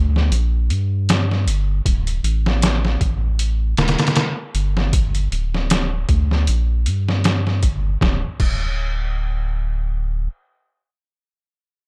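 A round analog bass opens this hypnotic, brooding trip hop excerpt, sounding deep and dark with tube saturation, its wave-folded tone sitting up front from D1 to G2. At 0.2 seconds a sampler-style drum kit joins at 78 BPM in 4/4, with a light swing on the sixteenths. The kit sounds compressed, pitched down and gritty, with a thumpy kick, a medium-tuned snare, hi-hat and crash cymbal placed up front and dressed in studio reverb. The bass holds sustained notes with a fast attack, and the drums drop out at 8.6 seconds, shortly after the music moves into a new section at 8.0 seconds. The bass carries on alone until 10.3 seconds in a dry mix.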